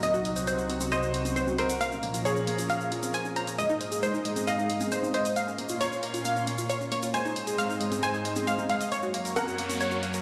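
Bittersweet yet euphoric, this short cut from a longer uplifting trance piece moves at 135 BPM in 4/4 with a straight feel, set in Bb minor. A punchy, detuned sawtooth unison pluck with a noise layer carries the melody, trailed by dub echo, while a brilliant, slightly worn grand piano plays a second line alongside it, also echoed. An up-front, thick, warbling pad with a slow attack and long release holds sustained chords through chorus, and a round, wave-folded analog pluck spins arpeggios with chorus and dub echo. Electronic hi-hat and congas with a tape-warm, small-room character drive the drums, joined by a grainy acoustic egg shaker. The chords move from Cdim through Bbm, Ab, Bbmadd9 and Ab again before settling on Gb, and an electronic noise sweep enters at 9.4 seconds, all bathed in a huge ambient reverb that gives the sound the weight of a big system in a bare room.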